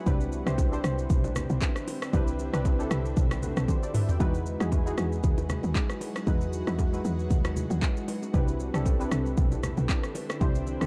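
An up-front afro-pop drum kit drives this soulful, relaxed amapiano piece at 116 BPM with a swung 16th feel, its electronic sound built from a deep kick, metallic hats, handclaps, rim clicks, shaker and toms, with a fill at 3.7 seconds. A woody, punchy log drum bass anchors the low end beneath round, mellow analog keys with detuned sawtooth tone and chorus, while an ethereal, airy pad with phaser and ensemble chorus sits bright in the background and very quiet ringing congas and bongos add acoustic colour. The harmony moves from Cmaj9 to Emaj9 at 4.2 seconds and back to Cmaj9 at 8.3 seconds, all in a dark, dry production cut from a longer piece.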